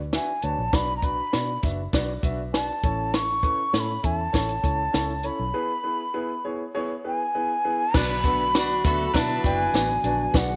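A straight 4/4 groove at 100 BPM drives this passionate, urgent slice of uptempo 1960s-style soul in B dorian, where an airy, up-front bansuri sings over a tight, dry cocktail drum kit, a round foam-muted electric bass and a woody upright piano moving through Bm, A and E, until, starting at 7.9 seconds, a smooth jazz-style horn section, then a lightly overdriven tonewheel organ on slow rotary and a jingly tambourine, and finally a slightly broken-up guitar riff from a small old amp crowd in behind under light reverb.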